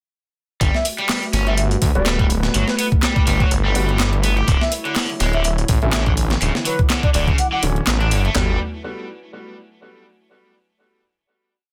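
Energetic and playful, this short breakbeat track drops in at 0.6 seconds with a gritty, compressed sampled break carrying a thumpy kick, layered under an electronic house kit of closed and open hats and claps, while a thick, beating detuned saw bass rolls out an up-front dub-style line beneath a bright, overdriven garage guitar riff with delay. A warbly, nostalgic tape-like pad sits in the background, chorused and pumping, as a pure, woody baroque flute with vibrato and an old record sound plays short answering phrases, and from 2.0 seconds an intimate baby grand adds sparse echoing chord stabs with audible action noise. The dense, heavily limited mix stays dry, moving from Gmaj9 to Dmaj9 before settling on a final Gmaj9 chord at 8.4 seconds.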